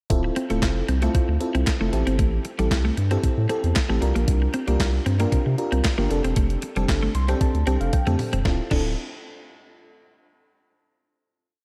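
Early-eighties boogie funk with a funky, late-night mood, built on a clean 12-bit drum machine's up-front four-on-the-floor beat, with a thumpy kick, a medium-tuned snare layered with handclaps, hi-hat, toms and crash, and a fill from 7.9 seconds. A deep, thick saturated sub bass plays a fat syncopated line with muted ghost notes, while a lush, dreamy FM electric piano with a soft pad layer, chorus and tube saturation plays rootless syncopated chords through Dm9, Am7, C7sus4 and F69, with a short fill from 6.9 seconds. A picked, compressed clean electric guitar with analog chorus adds a muted single-note line, all in light digital ambience before the closing Dm9 at 8.5 seconds.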